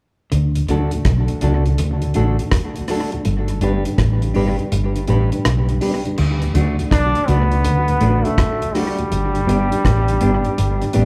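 A roomy, reverberant studio sound frames this sunny roots reggae passage, cut from a longer piece and played live by a band in one room at 82 BPM in 4/4, with a swung sixteenth-note feel in D major. Up front, a round, foam-muted vintage electric bass anchors the low end while a deep, dry drum kit with a tight kick, hi-hat, rim click and crash cymbal carries analog delay; the kick drops out between 4.7 and 6.2 seconds. A clean, hollow-bodied semi-hollow electric guitar plays a dark low riff, joined by a second, very quiet, compressed semi-hollow guitar whose accompaniment is treated with analog delay. In the background, a mellow tonewheel organ adds round accompaniment through chorus vibrato, a slow rotary speaker and analog delay. The harmony moves between D and G, and at 6.9 seconds a brilliant, vintage-toned trombone steps forward with the melody, its soft attack and light vibrato giving the second half a pop-style solo voice.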